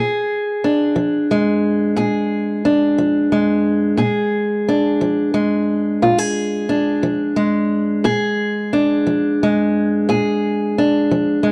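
Opening on a fingerpicked acoustic archtop guitar playing alone over a Bb7 chord, this soulful, gritty slow blues in a straight 12/8 lasts 11.5 seconds, the instrument's woody, boxy tone and old strings sitting up front in a dark, lightly reverberant production.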